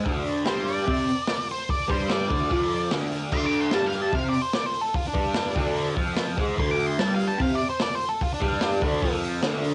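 A lo-fi home cassette sound with light reverb and a dull, rolled-off top frames this raw, rowdy garage rock excerpt at 147 BPM, where a double-tracked, overdriven rhythm guitar with phaser drives a riff over a Dmadd11 chord, a gritty, saturated breakbeat kit with dark cymbals and a tight kick sits up front, and a dark octave-fuzz lead guitar solos from 0.5 to 9.1 seconds.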